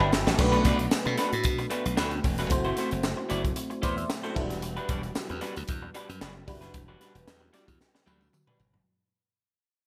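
Polished 1980s jazz-funk pop in E minor at 113 BPM with a light sixteenth-note swing, this bittersweet, slick excerpt opens with brief electric piano and drum fills before a bell-like FM electric piano with phaser and chorus accompanies a punchy, up-front glassy slap bass, a slightly broken-up, lo-fi guitar riff with subtle chorus, a gritty fusion kit with a high-tuned snare and gated reverb that fills again from 7.8 seconds, and a very quiet jingly tambourine, moving through Bm7, F#m7b5 and Em9 under moderate plate reverb in a bright digital production as the whole fades out from 0.4 seconds.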